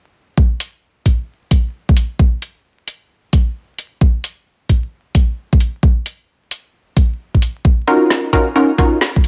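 UK garage in a skippy, soulful two-step at 132 BPM with a 16th-note swing: an overdriven, knocking electronic kick enters at 0.4 s, up front alongside a garage kit of woody snare and metallic hi-hats, while a punchy, detuned sawtooth-and-square chord stab with a fast-attack, decaying filter pluck, chorus and dub echo arrives on Ebm7 at 7.9 s, all set against light reverb and vinyl crackle in this short cut from a longer piece.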